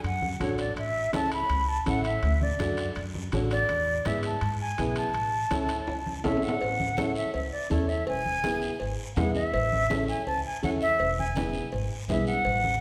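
Joyful and festive, this cumbia moves at a brisk 164 BPM in straight 4/4 in A major, tuned a touch low to A4 = 435 Hz, and it is cut from a longer piece. Up front, a mellow silver concert flute carries the melody between C#5 and B5 with an airy, metallic tone, soft attack and expressive vibrato. Beneath it, a woody pizzicato upright bass with steel strings anchors the low end, while a dark upright piano adds accompaniment from just after the start. Low-tuned congas struck with hard hands and ringing timbales and cowbell on metal shells sit in the background, while a raspy guiro is heard close and dry. A drum fill at 5.9 s leads into the second half at 6.6 s, and the harmony moves through D, A and E7 before settling on alternating E and A. The whole group sounds as if recorded in a church or concert hall, wrapped in a wet recital-hall reverb with a 1.5 s decay.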